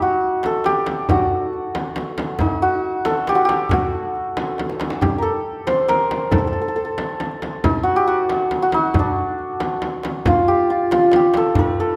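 Melancholic and hypnotic, this Persian modal ensemble piece in 6/8 is led by a shimmering, ringing hammered santur that sits up front and carries the melody between D4 and C5. Beneath it, a deep, distant tombak played with hard hands and a large, close and dry frame drum lay down the percussion, with a brief drum fill at 4.6 seconds and a new section arriving at 10.3 seconds. A moderate stage reverb lends the passage space, and it is cut from a longer performance.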